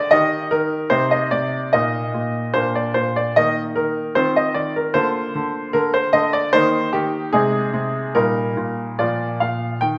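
A bright baby grand piano carries this short solo passage, its brilliant, natural tone sitting up front from start to finish across a span from Bb2 to G5. The music is a classical-period sonatina in Eb major at 75 BPM in 2/4, taken with a rubato feel that gives it a graceful, cheerful character. The harmony moves through Eb, Cm, Bb, F and Ab chords before settling back toward Bb near 9.0 seconds, keeping the phrase light and poised. A moderate recital hall reverb lends the sound a gentle sense of space around the instrument. The clip is cut from a longer piece and runs about 10 seconds.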